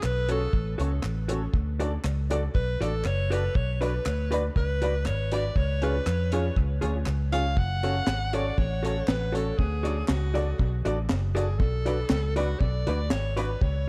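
A breathy alto saxophone with scooped, vibrato-laden notes solos over this driving, energetic ska excerpt at 119 BPM, carried by a round, punchy, foam-muted electric bass up front, a dark, dry reggae drum kit with a high-tuned snare and tight kick, crisp and very quiet group handclaps, a clean, compressed hollow-body jazz guitar entering at 0.3 seconds, and a jangly, detuned honky-tonk upright piano stabbing in the background, with dub echo trailing the saxophone, drums, guitar and piano in a light reverb.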